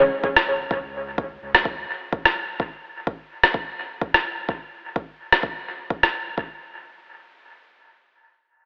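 Dub techno with a hazy, deep mood, cut from a longer piece and set in a lush hall reverb with a telephone-like tone over a lightly swung pulse. A layered, tape-coloured electronic kick drum carries the beat until 6.5 seconds, while an up-front, muffled, pitched-down rim click trails dub echo. A soft, round sub bass with sidechain pumping sounds only from 0.5 to 1.8 seconds.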